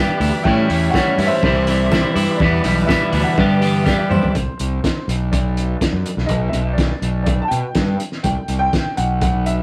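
A straight 4/4 pulse at 123 BPM from a cloth-damped, thuddy drum kit with a fat snare anchors this moody, cool indie rock passage, where a biting overdriven guitar riff up front, a very quiet crunchy second guitar, a soft, flute-like tonewheel organ on slow rotary speaker, a barky electric piano line and a distant, jingly tambourine ride over A7, Cadd9, Em7 and G6 until a drum fill at 3.9 s, after which, from 4.3 s, only the round, punchy fuzz bass, the drums and a woody, slightly detuned upright piano melody carry on through Bm and G/B in a rough rehearsal-room sound with light reverb.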